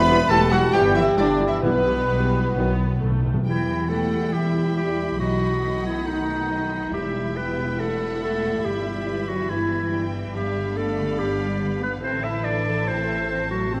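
An orchestra opens in E minor, with violins carrying the melody over a second, brighter and more distant violin line, while harp arpeggios ring beneath and cellos and double basses hold the bass. This classical excerpt at 140 BPM in 4/4 moves with a rubato, urgent and restless feel. Through the first few seconds, airy flutes, a roomy oboe and a mellow bassoon play from the outset, along with mellow trumpet stabs and quiet trombone chords. A faint, distant French horn section enters at 0.7 s, and rich violas come in just after the start. Very quiet, dry timpani play from the opening and add a fill leading into the second section at 3.5 s, where most of the winds and brass fall away and an up-front clarinet with a clear, vintage tone takes over as the second line. The strings and harp carry on through to 13.8 s as the harmony moves from E minor through B7 and G7 to A minor, all set in a moderate concert hall reverb.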